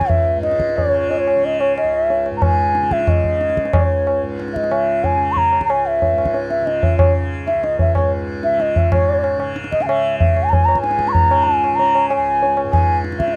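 Solemn and meditative, this Hindustani classical excerpt in raga Shivaranjani on C# moves at 186 BPM in 4/4, gathering speed across its 13.4 seconds, with a new section arriving at 8.9 seconds. A hollow, pure bamboo bansuri carries the melody up front with vibrato and a crisp attack, over a softly plucked tanpura drone that buzzes and shimmers beneath, while high-tuned tabla ring close and present. The dry, close studio sound has a 1970s character, touched by light reverb.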